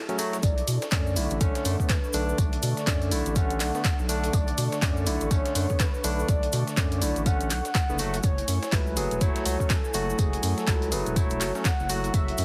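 A barky, lightly overdriven tine electric piano stabs through this deep, moody deep house excerpt at 123 BPM in B dorian, pumping against a round, mellow analog bass and an up-front electronic kick, while a velvety synth lead with chorus, vibrato and dub echo glides over Bm9 and F#m7 from 0.4 seconds, above a breathy, very quiet pad, handclaps and hi-hat, a gritty sampler-style kit with snare and tambourine, and a grainy cabasa in the background, all under light reverb and a heavily compressed radio sound.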